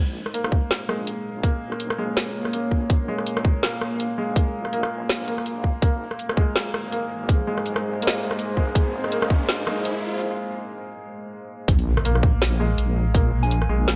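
A deep, moody ambient pad with a warbling, vintage sawtooth character and a deep, soft wobbling bass open this tense, heavy half-time drum and bass piece at 164 BPM, with a 16th-note swing over a Bb minor chord that moves to Ab. Almost at once a felt-muted upright piano adds intimate, mellow arpeggios through a tape echo, while an up-front electronic kit brings a woody snare, rim clicks and metallic hats over a tight, layered electronic kick. The pad carries chorus, its own built-in reverb and sidechain pumping, and the detuned bass sits beneath it with chorus and a high-pass filter. Late in the first section a background riser builds tension before a short break, and at 11.7 seconds the track drops onto an Absus2/Bb chord with an impact as the kick returns and the pad falls away. Near the close, at 13.4 seconds, a pure, gentle FM bell touches a single high note through chorus and phaser, all within a lush hall reverb, in this excerpt cut from a longer piece.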